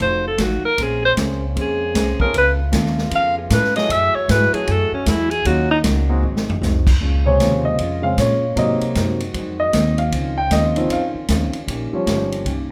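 A clear alto saxophone leads this brassy, dramatic big band swing excerpt at 154 BPM in Db major, its subtone and light vibrato scooping through a solo until 5.8 s, before a drum fill at 6.2 s hands off to a grand piano solo as the key turns to Bb minor at 7.0 s. Beneath it, a woody, pizzicato upright bass and a punchy, up-front drum kit drive the swing, while a dark, clean hollow-body jazz guitar picks its accompaniment and a tight, mellow trombone section sustains chords in the background. The piano, entering at 2.2 s, has a warm, natural tone, and the whole band sits in a moderate large studio reverb.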